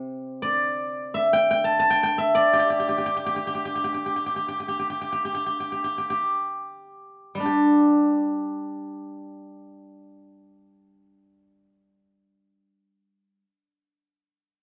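Chinese traditional solo plucked-string music in free time and the G zhi mode, tuned to A4 = 442 Hz, this serene, elegant passage is cut from a longer piece. A steel-string zither, played with fingerpicks and placed up front, spans C3 to A5 with a silvery, ringing tone, easing into a slowdown from 1.8 to 7.5 seconds before a new section begins. The performance is captured live in a stone room whose moderate reverb gives the notes a gentle halo.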